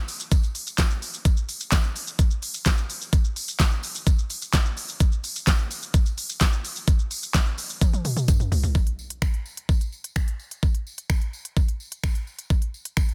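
Pop at 128 BPM in a straight 4/4, this energetic, driving excerpt is built on an up-front electronic drum kit with a knocking kick, fat snare carrying soft clipping, crisp hi-hats, finger snaps, handclaps, shaker and toms, joined by a very quiet, jingly, close and dry acoustic tambourine, opening in a drop that closes with a drum fill from 7.8 to 8.8 seconds before a new section takes over, all in digital ambience with a dense, heavily limited modern master.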